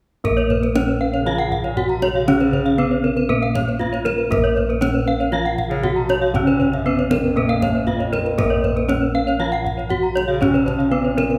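Balinese gamelan at 118 BPM in Bb pelog, shimmering and brilliant, this excerpt from a longer piece sets a bright, horn-mallet bronze metallophone melody over a vintage, band-limited metallophone accompaniment struck with a wooden mallet that sits in the background, while two airy metallophone arpeggio lines ring high above with the beating shimmer of paired tuning. Mellow, round bossed gongs carry the bass in a boxy small-room sound, and a deep kendang adds percussion from the first moments. At 1.2 s a warm, distant bass clarinet enters with a classical-style second line, and a moderate scoring-stage reverb surrounds the ensemble.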